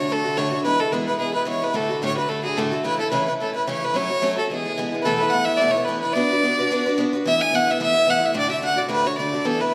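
A rich, focused fiddle carries the melody up front, played by a single bowed player with a light vibrato, ringing out in this bright, rollicking Celtic reel. Beneath it, a picked acoustic archtop guitar supplies a boxy accompaniment that spans from deep bass notes into the middle register, with the occasional finger squeak audible on the strings. The tune moves at a brisk 218 BPM in 4/4 with a gentle swing on the eighth notes, sitting in E mixolydian, with tuning set to A4 = 437 Hz. Chords such as D, E, A/C# and F#m pass through the opening section before a second section arrives at 5.0 seconds, bringing Esus4 and Bm. Both instruments play throughout the clip, which is cut from a longer piece and ends at 9.7 seconds. A wet recital hall reverb surrounds the pair, and the recording carries some lossy compression artefacts.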